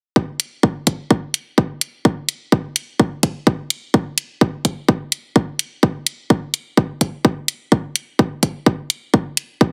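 A punchy, layered electronic kick drum, high-pass filtered and up front, drives this clinical, cool minimal techno fragment at 127 BPM in 4/4 with a 60% swing on the 16ths, joined from 0.4 seconds by a tape-warm electronic hi-hat, both parts re-recorded in a small room and sitting dry within a heavily compressed, radio-like sound.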